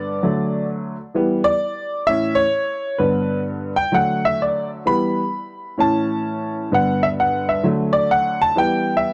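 Swung eighths drive this uplifting, danceable soul passage at 130 BPM in 4/4, cut from a longer piece and set in D major with the tuning at A4 = 439 Hz. A lone upright piano carries the whole 9.1 seconds, sitting up front with a woody, worn, slightly detuned character and long sustain as it spans G2 to B5. It circles through D, Em, A and G, and a light reverb adds a touch of space around it.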